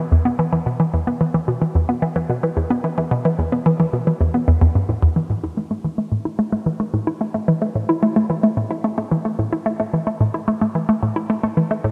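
A straight 4/4 pulse at 110 BPM sets an ambient frame for this mysterious, expansive fragment of a longer piece. A single hollow square-wave pluck carries everything alone from 0.0 to 11.9 seconds, moving between E2 and E4. Its filter pluck has a fast attack and short decay, giving each note a bouncy character, while chorus, phaser and delay colour its tone. The synth sits up front in the mix, surrounded by a lush hall reverb with a 2.8-second tail that opens up the sense of space. A new passage begins at 5.3 seconds, and the whole performance is tuned to A4 = 441 Hz.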